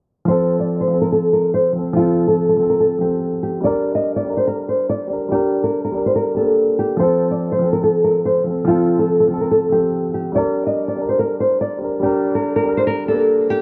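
A worn, warbling cassette-tape sound with drifting pitch, a low-pass filter and a filter sweep running from 0.3 to 13.6 seconds colours this tense, ominous hip hop excerpt, set in light studio reverb at 143 BPM with a half-time feel and tuned to A4 = 435 Hz. Up front, a woody, thumb-plucked nylon-string guitar with old strings carries a classical-leaning melody, while a dark, mellow concert grand piano with deep bass supplies the accompaniment. Both parts play throughout as the harmony alternates between F and Gm.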